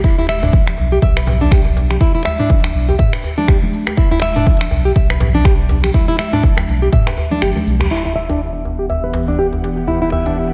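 A lightly reverberant small-room sound frames this hypnotic, spiritual afro house excerpt, with a fingerpicked nylon-string guitar playing classical-toned arpeggios up front, pumping and echoing over a deep, round sine sub bass. An overdriven, layered electronic kick drives the swung groove alongside finger snaps, shaker and toms from a produced afro-pop kit, while a tight, cracking djembe and thick-skinned, high-tuned congas sit in the background. The kick drops out at 7.4 seconds, a band accent follows, a filter sweep on the guitar begins at 7.9 seconds, and an ethereal, airy, detuned pad with chorus, phaser and reverb enters at 8.4 seconds.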